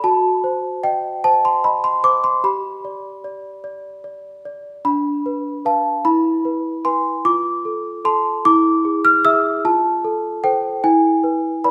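Tender and dreamy, this brief classical lullaby for solo celesta moves at 50 beats per minute in a straight 6/8, its bell-like, delicate voice played with medium felt hammers, sitting up front and ranging from D4 to F6, tuned to A4 = 437 Hz, and bathed in a wet recital-hall reverb as it drifts through chords from F#dim7 and G toward alternating E and F harmonies before the cut at 11.7 seconds.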